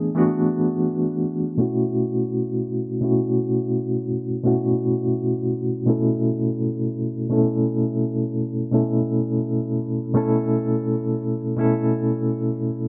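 Late-night and yearning, this brief R&B fragment, cut from a longer piece, moves at an unhurried 42 beats per minute in a straight 6/8 in B minor. A lone reed electric piano carries everything from start to finish, its reedy, clean voice sitting direct and up front with a fast tremolo shimmering through each chord. The harmony rests first on E9sus4, then settles at 1.6 seconds onto B9sus4, leaving the suspended colour hanging unresolved. From that same point a filter sweep runs to the close at 12.9 seconds, gently reshaping the tone. Light reverb and a digital ambience surround the instrument, while a low-pass filter softens the top end for a hushed, intimate sound.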